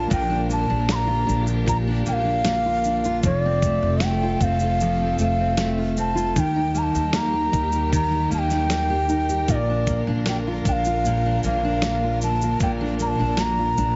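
An airy, close-miked bamboo bansuri carries the melody up front through this carefree, heartfelt acoustic pop excerpt in Bb major at 77 BPM, its tongued notes shaded with vibrato. A full-bodied fingerpicked jumbo guitar and a woody pizzicato upright bass sit beneath it, while a lush bowed string section holds sustained chords with portamento lower in the mix, and a gritty sampler-style kit with a thumpy kick, shaker and medium-tuned snare enters at 0.1 seconds. The sound is dry and heavily compressed, with a dulled, radio-like top end, as the chords move from Bb to F to Eb and back to Bb.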